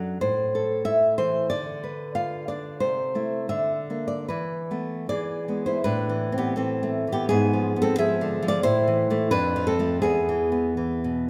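A bright, up-front nylon-string guitar rings through a wet concert hall reverb in this wistful, intimate romantic excerpt for solo classical guitar, fingerpicked in A minor at a rubato 73-94 BPM in 2/4, moving from Am through Bb/D and Esus4 to E by 5.1 seconds before a second passage turns on G#dim7 and F and comes to rest on E at 10.0 seconds.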